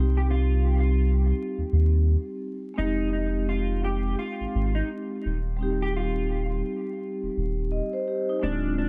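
This boom-bap hip-hop excerpt moves at 85 BPM in 4/4, with a 16th-note swing of 59% giving it a loping, head-nodding gait, and the mood is gritty and tough in C minor. A soft dub sub bass sits up front throughout, deep and round with a fast attack and sustained, mellow tone. Alongside it, a vibraphone played with soft mallets carries the accompaniment, its metallic ringing softened by a slow motor vibrato and a band-limited, vintage cassette-tape character. At 0.2 seconds an electric guitar takes the melody within a narrow range, its dark, slightly broken-up fingered tone colored by analog chorus and analog delay. The chords move from Cm to Fm7 at 2.8 seconds and settle on Cm/Eb at 5.3 seconds. A small room and light reverb frame an echo-heavy mix dusted with vinyl crackle.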